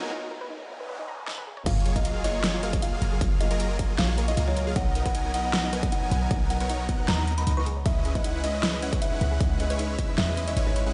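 Future bass at 155 BPM in a half-time 4/4 feel, this euphoric, bright passage in F# major is cut from a longer piece and opens on a brief build-up, where a filter sweep runs over the soft round pluck's dark, chorused arpeggios while a riser, noise sweep and sub drop sit in the background over Bmaj7 and G#sus4. A drum fill from the big-room dance kit arrives at 1.3 seconds, and the drop lands at 1.7 seconds with an impact, the punchy, overdriven electronic kick sitting up front beside the kit's huge snare, metallic hats, crash and toms. Huge, lush supersaw chords built from detuned sawtooth unison carry the riff with sidechain pumping, moving through F#maj9, Bmaj7 and C#m9. Underneath, a boomy 808-style bass with a sine body and tube saturation anchors the low end, while a woody, hollow kalimba plays the melody with a ringing, airy tone and dub echo. The whole mix sounds as if played on a big sound system in a bare room, with stone room reverb and a top end that stops at 10.4 kHz.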